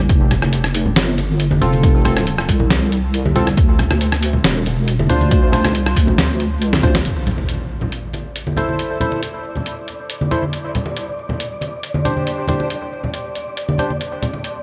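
Meditative and cavernous, this deep dubstep excerpt moves at 138 BPM in a half-time feel in A minor, opening on a drop where a deep, wobbling, chorused bass and an overdriven, punchy electronic kick hold the floor until 7.0 seconds. A muffled, pitched-down sampler-style trip hop kit with hi-hat, rim click and snare, ringing congas soaked in dub echo, and hollow organ stabs colored by analog chorus, cassette tape and dub echo carry on over chords moving from F and Dm7 to Am and Csus2. An electronic impact marks the second section, and an airy, breathy wind-like texture drifts in at 8.2 seconds inside a light digital ambience.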